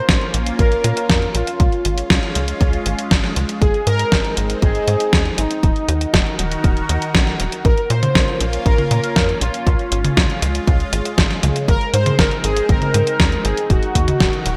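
Romantic and playful, this italo disco excerpt moves at 119 BPM in Db major, with a bold, nasal analog synth brass carrying the melody through chorus and delay over a lush, detuned unison pad treated with chorus and phaser. Beneath them, a tight sequencer bass with a saturated, plucky sawtooth edge drives the low end, while a punchy, tape-warm electronic kick and a clean 12-bit digital drum machine add hi-hat, toms and a fat, up-front snare bathed in gated reverb. The bright 1980s-style digital production sits in a moderate plate reverb, and the chords cycle through Bbm, Db, Ab and Ebm.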